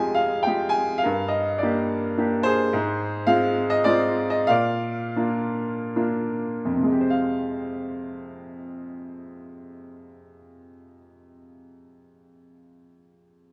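Classical solo piano in a lyrical vein, this short passage cut from a longer piece carries a cool, moody air in F dorian. A bright upright piano plays alone throughout its 13.5 seconds, its woody, brilliant tone sitting up front and spanning from F2 to Bb5. The playing moves in a flexible 3/4 with rubato, the pulse ranging between 61 and 110 BPM, and it slows down from 2.7 to 6.9 seconds. The harmony opens on Fmadd9, passes through Gm, Fm/Ab and Bb, then returns to Fmadd9 as a new section begins at 6.9 seconds. A moderate recital hall reverb gives the instrument an open sense of space around it.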